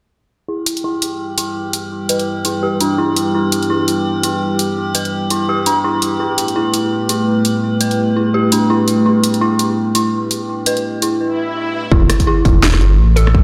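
A dark, detuned synth bell and a metallic, inharmonic drone open this heavy half-time drum and bass excerpt at 0.5 seconds, in E minor at 168 BPM with a swung sixteenth-note feel. The eerie FM bell plays arpeggios through chorus, phaser and delay while a filter sweep works across it. The drone hangs on a single warbling, vintage-toned note deep in its own reverb. Overdriven drums with a cracking snare and bright hats come in almost at once. A moody, wave-folded analog pad then holds sustained chords from Em to Gadd9, pumping under sidechain compression. An electronic swell leads into the drop at 11.9 seconds, where a rumbling, beating saw bass and a distorted kick arrive up front. A hollow, bouncy square pluck appears only at 13.2 seconds, all set in a lush hall with a big, roomy sound.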